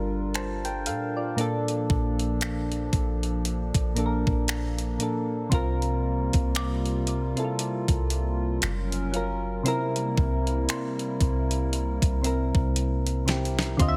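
Mellow electric-piano-like synth keys with chorus open this romantic, smooth contemporary R&B excerpt at a slow 58 BPM, over a hollow, flute-like pad and a deep, round 808-style bass, with a crisp 8-bit drum machine of thumpy kick, fat snare, hi-hat and finger snaps joining up front at 0.3 seconds in a swung 4/4 feel. A woody mallet-like synth pluck with chorus and delay enters quietly in the background at 6.6 seconds, as the chords move from Gm7 and Bbmaj7 through C7sus4 and Gbmaj7 to C7. A drum fill arrives at 12.8 seconds, all set in a digital ambience.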